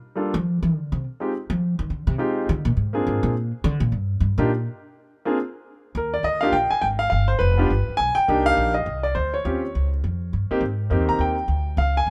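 A brisk swing at 206 BPM in 4/4 sets this playful, relaxed jazz fragment in Eb major, cut from a longer piece. A woody, pizzicato upright bass sits up front and carries a solo through the first 6.0 seconds, while an intimate grand piano with audible action noise plays the melody over chords such as Gm7, Bb7 and a rootless Ebmaj7. From 6.0 seconds the harmony moves through Ebmaj9, G7, Cm7 and Eb13 to Abmaj9, all in light reverb.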